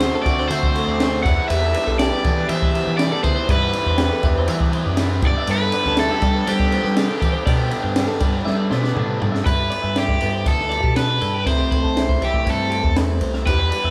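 Restless and wistful, this math rock and midwest emo passage at 120 BPM in straight 4/4, taken from a longer piece and played live in one room with a moderate large studio reverb, sets an up-front, overdriven cranked stack guitar melody over a slightly broken-up, lo-fi accompaniment from an electric guitar through a small old amp, twangy phased twelve-string arpeggios tucked in the background, a double-tracked raw garage guitar riff with spring reverb that drops out at 9.5 seconds, a round, growling fingered bass with overdrive, and a compact cocktail drum kit with dark cymbals, a high-tuned snare and punchy kick that rolls through a fill at 8.5 seconds, all moving through D7, Em7, G6 and C6.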